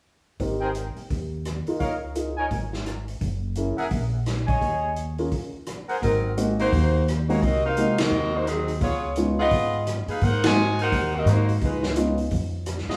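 A swinging, energetic big band excerpt opens with long-sustaining grand piano, woody pizzicato upright bass and a distant, roomy drum kit with dark cymbals and a boomy kick. The rhythm section is joined at 0.6 s by warm, smooth-topped trumpet section stabs with light vibrato. After a short break at 5.3 s, a bright, up-front saxophone section carries the melody from 6.0 s, with full-band accents punctuating the line, all set in a large studio reverb heard from further back in the room.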